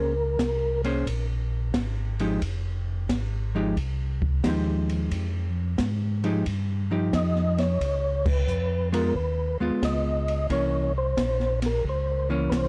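Bluesy and smoky, this soul jazz organ trio passage swings in 4/4 and is cut from a longer piece. A soft, flute-like tonewheel organ with percussive second harmonic attack carries the melody, sounding briefly at the start and then returning at 7.1 seconds, colored by chorus vibrato, a slow rotary speaker and analog delay. Beneath it, a round, mellow tonewheel organ holds down the bass up front, thickened by tube saturation alongside its own chorus vibrato and slow rotary speaker. A dark, clean hollow-body electric guitar, picked and also up front, comps throughout over changes moving from Bbm9 to Fm9, Db7 and C7b9. An acoustic drum kit recorded in a small room adds smooth, shadowy cymbals, a high-tuned snare and a boomy kick, with the whole band hitting an accent at 8.1 seconds. The gritty hardware recording stays fairly dry, with only light reverb.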